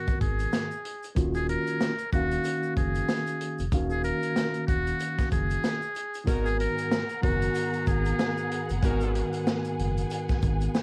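Gritty and moody, this boom-bap hip-hop excerpt rides a swung 94 BPM groove in G# dorian, moving from G#m9 to D#m7 before returning to G#m9 at 6.3 seconds. A punchy, up-front vintage drum kit with a medium-tuned snare and a rolled-off top anchors the beat, joined by a grainy tube shaker in the background and a deep, full sub bass with octave that sustains low beneath it. A mellow, clean tine electric piano carries the chords through its built-in speakers, while a buzzy, breathy muted trumpet sings a jazz-style solo line with light vibrato and tape echo until 8.8 seconds. From 6.3 seconds a lush, distant string section adds bowed chords with portamento, and a tight trumpet section in the background punches in with pop-style stabs. Cassette tape coloring, vinyl crackle and a dry, little-reverb home-recording sound give the track its worn, intimate character.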